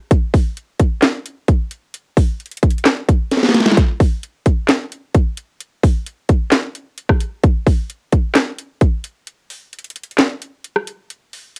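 Dark and melancholic, this hip hop cut runs at 131 BPM in 4/4 with a half-time feel, and it is taken from a longer piece. A trap drum kit carries it alone from 0.1 to 11.6 seconds, built from kick drum, snare drum, hi-hat, rim click and handclaps. The electronic, produced kit sits up front, with a hard-clipped kick, a sharp snare and metallic hats. A drum fill arrives at 3.3 seconds, and a break begins at 9.3 seconds and carries on to the close. Light reverb and a home recording on cassette shape the sound.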